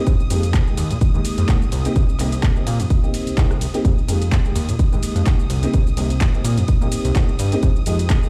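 A fat, sawtooth-edged analog bass sits up front in this short cut from a longer filtered disco house track, its detuned, wave-folded tone moving through a filter sweep between C2 and Bb2 and pumping against the sidechain. The groove runs at 127 BPM in 4/4 with a light 55% swing on the 16ths, and the mood is nostalgic and funky in F minor, cycling between Fm11 and Cm7. A punchy, layered electronic kick drives the beat up front with a small-room character, while a tape-warm analog drum machine adds handclaps, hi-hat, ride cymbal, rim click and shaker, its hats, cymbals and percussion pumping with the sidechain. A dark, mellow grand piano plays boxy accompaniment with long sustain from 0.0 seconds, coloured by a phaser and the same pumping. Behind it all, a lush, woody string section bowed sul tasto with vibrato holds sustained chords in the background, also pumping. The whole mix sounds as if played on a big sound system in a bare room, soaked in large studio reverb.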